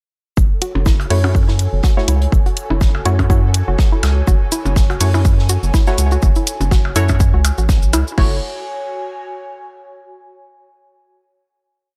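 Minimal techno with a quirky, sparse mood and a swung four-on-the-floor groove, built on a punchy electronic kick and a rubbery square bass riff that pumps against it. An overdriven house kit adds hats and crash, a swinging big-band kit supplies a looped breakbeat of high-passed hats, shaker and snare, and percussion blips click with delay, while a hollow square pluck runs a 5-step loop drifting against the bar and filtered dub chord stabs echo as one shape moved in parallel. A breathy pad and a very quiet pulsing gated texture holding one high note sit underneath, a grainy cabasa joins with hand-played sixteenths at 4.3 seconds, and in the dark, dry mix the pad lingers alone on the final chord until 10.1 seconds.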